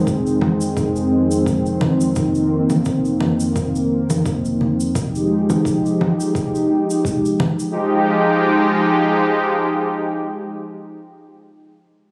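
Captured on a phone in a room and wrapped in a moderate plate reverb with compression, this smooth, wistful sunset chillout excerpt moves at 86 BPM in F minor with a gentle swing on the 16ths. A lush, detuned sawtooth pad sits up front with a warbling vintage chorus, slow attack and long release, holding sustained chords from Abmaj7/F through Cm7/F to Fm9 across the whole clip. Beneath it, a punchy layered electronic kick carries the groove until about 7.2 s and a produced shaker-and-conga layer until about 7.7 s, while soft-handed, close and dry acoustic congas enter in the background at 1.8 s, leaving the pad to ring on alone until 11.2 s.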